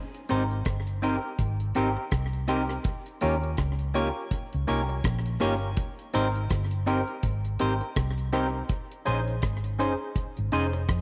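A round, foam-muted electric bass sits up front in this sweet, romantic lovers rock reggae excerpt in Ab major, moving at 82 BPM with a lightly swung 16th-note feel over chords of Abmaj7, Eb7 and Bbm11. A deep, dry drum kit with a punchy kick, hi-hat and rim click carries a slapback echo, while a bright, barky tine electric piano through a combo amp adds chorus-tinged, echoing accompaniment. A clean, dark semi-hollow electric guitar plays stabs, and the whole excerpt sits in a moderate echo chamber reverb.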